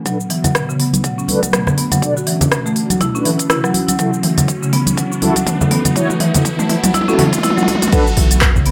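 From 0.1 seconds this earthy afro house build-up at 122 BPM, with a swung 16th-note feel, layers woody, buzzing marimba arpeggios and dark, detuned synth brass stabs, both carrying tape echo and filter sweeps, over a smooth sawtooth pad with chorus sitting in the background, all pumping against a deep electronic kick and an up-front deep house kit of smooth hats, handclaps, rim clicks, shaker, toms and crash playing a drum fill, joined from 0.4 seconds by bright, hard-hand congas in a small room, as the chords move from Bm7 to F#m7 and back; an electronic riser climbs from 2.4 seconds to an impact at 7.9 seconds, and a boomy, sine-toned 808-style bass lands on B1 at 8.2 seconds.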